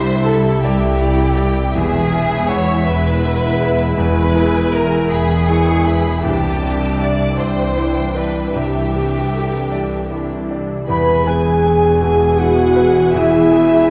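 A focused violin section carries the tender melody of this moving cinematic piece, while a second, more distant violin line sings expressively beneath it in a slow, rubato 6/8 at 53 BPM, cut from a longer work and moving between Cadd9 and E. Mellow French horns hold sustained chords, a clear grand piano with long sustain and a softly ringing, fingerpicked harp add accompaniment and arpeggios, and smooth violas, cellos and double basses, all lush and bowed with vibrato, fill out the harmony and bass. At 10.9 s an airy silver flute joins with a second line, all set in a dark production with a reverberant concert-hall sound.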